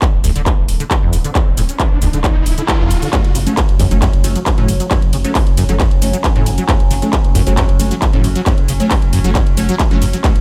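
Driving peak-time techno at 135 BPM in F# minor, this intense, hypnotic passage is cut from a longer piece and tuned slightly below standard pitch. A distorted, layered electronic kick sits up front from the start alongside a drum kit of handclaps, shaker, ride and metallic hi-hats, while a squelchy, resonant sawtooth acid bass riff and a deep, saturated sine sub bass pump beneath it through sidechain ducking. An electronic riser climbs from 0.8 seconds toward a band accent at 2.7 seconds, and the drop lands at 3.1 seconds on an F# minor chord. There an aggressive, detuned unison rave stab enters with chorus, cassette-tape grit and dub echo, followed at 3.7 seconds by a slow-attack drone whose ring-modulated overtones shift and sweep. The dark production wraps these layers in light reverb and digital ambience, keeping the low end thick and the mood intense.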